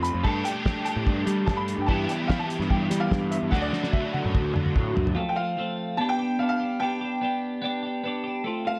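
A straight 4/4 pulse from a cloth-damped, thuddy drum kit with a fat snare and tight kick drives this jangly, wistful indie rock excerpt, where a bright, twangy twelve-string electric guitar riff with phaser sits up front beside a biting overdriven guitar riff with chorus and slapback echo, a punchy fuzz bass and a woody, slightly detuned upright piano melody in plate reverb, until a drum fill from 3.5 s leads the bass to drop out at 5.1 s and the drums and overdriven guitar to stop at 5.2 s, leaving the piano and twelve-string to carry on alone over new chords.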